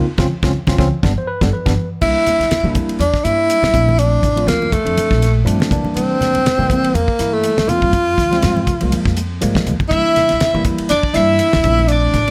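Bright and soaring, this swung electric jazz fusion excerpt opens with a band accent over clean tine electric piano in plate reverb, woody pizzicato upright bass, a dry damped 70s drum kit with a fat snare and tight kick, and thick-skinned congas set back in a small room. At 2.0 seconds a close-miked tenor saxophone takes the solo up front, its vibrato and scooped notes carried by slapback echo and plate reverb. At 9.9 seconds a biting, double-tracked overdriven guitar adds a picked second line.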